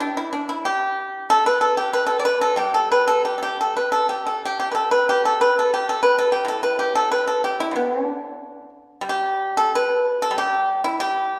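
A solo pipa carries this serene, flowing fragment of traditional Chinese plucked-string music, its tone bright, percussive and dry, played with fingerpicks and placed up front. The piece moves in 2/4 at roughly 89-98 BPM, though the pulse is treated freely in a rubato feel, and the instrument is tuned slightly low, to A4 = 436 Hz. Its lines span from A2 up to D5. Around the instrument, a recital hall reverb with a 1.7-second decay lends a sense of distance, as if the listener sits further back in the room. The opening passage runs to about 9.1 seconds before a new section begins, and the recording breaks off at 11.4 seconds, cut from a longer piece.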